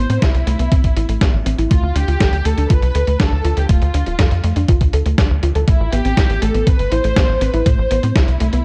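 Italo disco in A minor at 121 BPM, this short cut from a longer piece has a danceable, nostalgic pull and a dark, warm production with light digital ambience. A tight sequencer bass sits up front with a punchy, driving sawtooth-and-square tone, while an overdriven electronic kick thumps beneath it with the character of a small room. A gritty, compressed sampler-style soul kit adds hi-hat and a medium-tuned snare from 0.1 seconds. A soft, round pluck plays arpeggios with a detuned, full-bodied shimmer, carried by chorus and tape echo. Over the top, a dark studio violin section carries the melody with woody, bowed ensemble tone, vibrato and a touch of delay. The harmony moves from Amadd9 to Dm at 1.7 seconds and returns to Amadd9 at 5.7 seconds.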